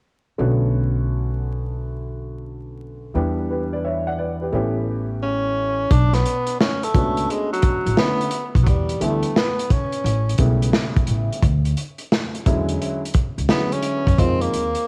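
Cut from a longer piece, this home cassette recording carries vinyl crackle, light reverb and a small-room ambience, setting a cool, nocturnal jazz-hop mood at 87 BPM in B minor with a swung 16th-note feel. A worn, slightly detuned upright piano with tape coloring and a woody, thumpy pizzicato upright bass open at 0.4 seconds, playing over chords that move from Bm9 through Em7 and A9, then reach Dmaj9#11 and a closing Fm7. A punchy tenor saxophone solo with light vibrato, scooped notes and tape echo enters at 5.2 seconds, and a gritty, saturated breakbeat kit with a tight kick, a medium-tuned snare, hi-hat and a rolled-off top joins at 5.9 seconds.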